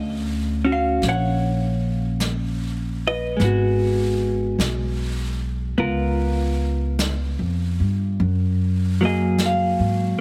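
Woody pizzicato upright bass sits up front in this smoky, melancholic jazz ballad fragment at a slow 50 BPM in 4/4 with a lilting swing. A dark, clean hollow-body electric guitar, picked and compressed, shares the foreground as it comps through Ebm7, Abm7, Db6 and Gbmaj9, tuned slightly flat at A4 = 439 Hz. Softly brushed snare and hi-hat enter at 1.0 seconds with an airy small-room polish, while the whole dry mix carries a heavily compressed, radio-like character.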